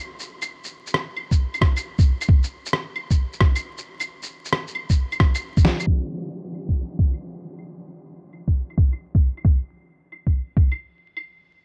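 A swung, shuffling 4/4 groove at 134 BPM drives this ghostly, wistful future garage fragment, cut from a longer piece. Electronic shaker, claves, rim click and a medium-tuned snare open the track at 0.2 seconds, sampler-style and compressed, their muffled tone shaped by low-pass filtering and placed up front. A thumpy electronic kick joins at 1.3 seconds, sitting louder and equally close, its dull, padded punch anchoring the pattern. Around 5.6 seconds a drum fill and a band accent mark the turn into the second section, where a filter sweep runs across the drums until the end. Light reverb and digital ambience surround the beat, while vinyl crackle and a low-pass filter lend the whole recording a hazy, worn patina.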